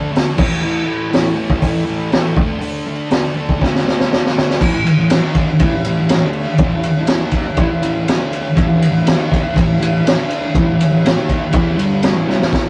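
A rough rehearsal-room recording with tube saturation, cassette tape grit and lossy compression artefacts sets the tone for this brief excerpt cut from a longer piece, all sitting in a moderate studio reverb. It's swaggering, raw garage rock at 121 BPM in a straight 4/4, built from just a thick fuzz guitar and a raw garage drum kit, both up front. The double-tracked, picked electric guitar plays a distorted riff between G2 and E4, moving over A5 and D5 power chords before returning to A5 at 4.6 seconds. The acoustic kit, mid-forward with a rolled-off top, pairs a boomy kick with a medium-tuned snare and adds hi-hat, ride and crash cymbals, all with a saturated, gritty edge. Drum fills mark the turn at 3.6 seconds and return near the end at 12.3 seconds.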